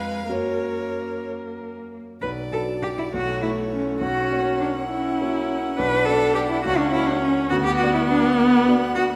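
A stormy, dramatic movement from the classical period opens with the full piano quartet at once, moving in a quick but rubato 6/8 at 62-71 dotted-quarter beats per minute in B minor. A clear, smooth violin sings the melody with vibrato, while an up-front, rich cello carries an even second line. A soft-attacked viola adds expressive portamento and a warm grand piano lends deep bass to the accompaniment. The strings sit close within a wet concert-hall reverb, and the cello drops out at 9.0 seconds, just before the others end at 9.2 seconds.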